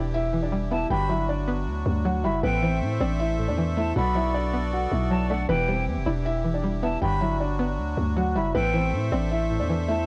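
Hip hop at 157 BPM in a half-time 4/4 feel, eerie and dark, built on a growling, buzzy 808-style bass that sits up front beneath a soft, felt-muted upright piano melody touched with tape echo and a twangy, chorused resonator pluck that sounds string-like. A reedy, sweet accordion holds sustained chords with its light tremolo tuning, while an airy, distant silver flute enters at 0.7 seconds with a second line, also echoed on tape. The sound is dry and gritty with transformer saturation and little reverb, moving through Em, Gmaj7, Am and Bm7 in this short cut from a longer piece.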